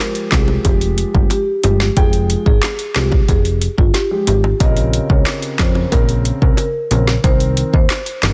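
Hypnotic and tough, this short dancehall excerpt in F minor moves at 91 BPM in a straight 4/4, cycling through Fmadd9, Bbmadd9 and Cm7 chords. A boxy, dark baby grand piano opens at 0.0 seconds. An up-front electronic afro-pop kit with a deep kick, woody snare, metallic hats and handclaps joins almost at once, and a punchy, funky sawtooth-and-square analog bass with a fast, decaying filter pluck sits beside it. A round, rosewood-toned marimba played with soft mallets carries the melody through tape echo, while tight, high-tuned bongos stay close and dry in the background, all inside a studio reverb and a dense, heavily limited modern master.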